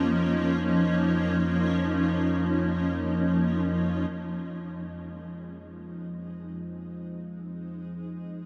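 Cavernous and desolate, this dark ambient drone in F minor drifts in free time, cut from a longer piece, with a cloudy, evolving granular pad sitting up front over a deep, ominous rumbling drone, both washed in their own built-in reverb across the full 8.5 seconds. A faint bronze singing bowl rings on F4 with slow metallic beating until 4.1 seconds, when the harmony moves from Bbm/F to Fm and the ambient pad fades in. Everything sits in a huge, wet space with a long 7.9-second reverb tail and the grain of cassette tape.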